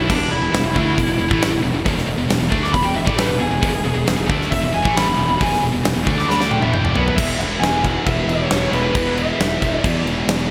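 Hard rock at 135 BPM in a straight 4/4, this anthemic, energetic cut from a longer piece sits in E mixolydian. A biting, overdriven lead guitar carries the melody as a solo from the start, colored by digital delay. A huge arena drum kit sits up front, with a punchy kick, a medium-tuned snare, bright cymbals, toms and gated reverb. Beneath them, a scooped high-gain guitar plays the riff in the background, joined by a very quiet sludgy distorted guitar and a faint double-tracked heavy high-gain guitar, while a growly fuzz fingered bass, direct and amped, anchors the low end. A drum fill at 6.3 seconds leads into a new section at 7.2 seconds, where the chord moves from E5 to E, and the lead guitar stops at 10.0 seconds. Lush hall reverb and a 1980s-style digital production give the whole mix its arena scale.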